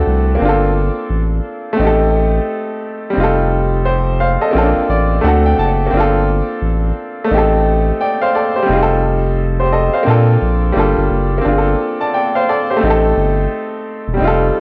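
Melancholic and reflective, this lo-fi hip hop excerpt pairs a bright, woody upright piano, coloured by cassette tape and playing a fill from 4.5 to 5.9 seconds over seventh, ninth and eleventh chords, with a deep, saturated sine sub bass up front, all sitting in a spring-reverb room on worn, warbling old tape.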